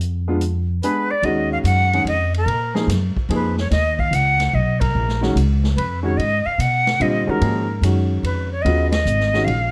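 A swinging triple-metre pulse drives this short cut from a longer modal jazz piece, its mood spiritual and searching. The pizzicato upright bass, woody and growly, is featured at the very start over the vintage drum kit, whose punchy kick, snare, hi-hat and ride sit low in the mix with a rolled-off top. A clear, slightly worn grand piano soon adds chords, moving from a diminished opening into minor eleventh harmonies. The airy metal flute carries the melody from 0.8 seconds, with vibrato, a crisp chiff on its attacks and plate reverb, its tone distant yet expressive and up front. The full band hits accents at 4.7 and 8.9 seconds, all within a natural studio room touched by light reverb.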